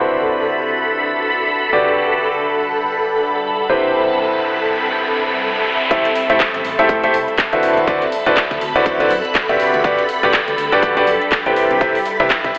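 Soulful and energetic, this piano house piece at 122 BPM opens with a clear, intimate baby grand riff up front, its action noise audible under a low-pass filter and diffuse delay, over shimmering vintage string-machine violins and a mellow, ethereal pad, all breathing with sidechain pumping through D13, Gmaj7/D and Cmaj7 chords. A background riser sweeps in at 3.4 seconds before the drop at 5.9 seconds brings a punchy electronic kick, a house kit with crisp filtered hats and handclaps, a very quiet gritty sampler-style kit with a fat snare, and a dark, round hollow-body bass sitting low in the mix. The dreamy, swung mix is soaked in cathedral reverb with a telephone-like tint.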